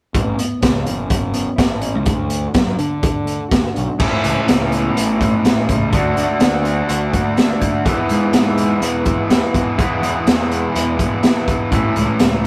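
Quiet-loud alternative rock at 124 BPM with an anthemic, cathartic mood, this excerpt from a longer piece opens with a dark, clean electric guitar playing arpeggios with tape echo in the background over an overdriven, punchy fuzz bass and a raw, gritty garage drum kit with a high-tuned snare and dark cymbals, until a compressed, distorted fuzz guitar riff bursts in up front at 4.0 seconds as the chords move from Aadd9 and D through E to A, all captured in a rough rehearsal-room recording with light reverb.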